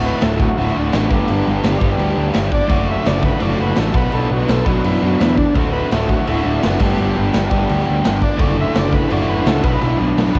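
This home cassette recording has a light small-room reverb, and it is cut from a longer piece of swaggering, rowdy garage rock. It moves at a brisk 169 BPM in straight 4/4 in D major, cycling twice through D, G, D/F# and Bm. Up front, a biting, double-tracked overdriven guitar picks out the riff, while a dark, round fuzz bass sits underneath with its own overdrive. A raw acoustic drum kit enters at 0.2 seconds, with a punchy kick, a medium-tuned snare and crash cymbal sounding gritty and rolled-off in a bright stone room that pumps. Further back, a vintage combo organ carries the melody from 0.1 seconds, buzzy and overdriven with heavy vibrato.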